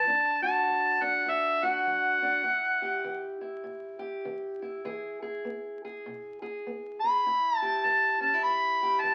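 An overdriven, amplified harmonica carries the gritty, soulful melody up front in this short excerpt of swung acoustic country blues, its scooped notes, tongue slaps and light vibrato riding over a dark, boxy fingerpicked parlour guitar, all heard through moderate studio reverb and the crackle of a very old 78 rpm record.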